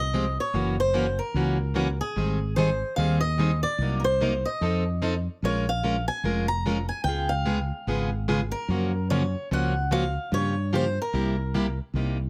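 Swung eighths drive this bittersweet jazz manouche passage cut from a longer piece, where a boxy, picked swing-style acoustic guitar carries the melody up front over a round, punchy, dark fretless electric bass and a picked plugged-in steel-string acoustic guitar with fresh strings and a parlour tone that supplies the chords, all captured by close, detailed microphones in light reverb.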